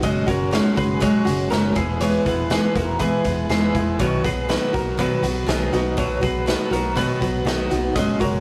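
A straight 4/4 pulse at 121 BPM drives this breezy, bright jangly indie pop excerpt in B major, where an up-front picked steel-string acoustic guitar leads the accompaniment over F#sus2, E and B chords, a clean, compressed twelve-string electric guitar shimmers with tremolo-treated arpeggios, a dark, round, foam-muted vintage bass sits low, and a gritty, saturated garage kit with punchy kick and pumping room sound keeps hi-hat, kick and snare going, all captured in a rough rehearsal-room recording with moderate reverb.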